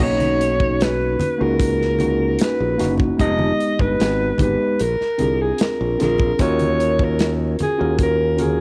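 Bittersweet and silky, this cut from a longer piece of lush 1970s-style soul moves at an unhurried 75 BPM in 4/4. An alto saxophone carries the melody with vibrato, a roomy tone and analog delay over a worn, slightly out-of-tune tine electric piano with cassette-tape colouring, while a growly, punchy fingered electric bass and a tight-kicked studio drum kit, also tinged with cassette tape, keep the groove up front. Low-tuned congas sit in the background, all heard in light small-room reverb with a homespun cassette character as the chords move from Bmaj9 through Fm7b5 and Bb7 to Ebm7.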